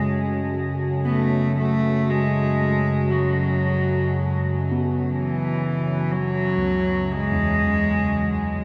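A straight 4/4 pulse at 60 BPM underpins this cavernous dark ambient drone in F# minor: an up-front, rich bowed cello plays a floating sul tasto melody through shimmer reverb and tape echo over an ominous, rumbling low drone, while bronze gamelan-type bossed gongs sound echoed arpeggios and a detuned, warbling pad holds an F#madd9 chord in the background and fades out, the whole excerpt set inside a huge 8.2-second reverb.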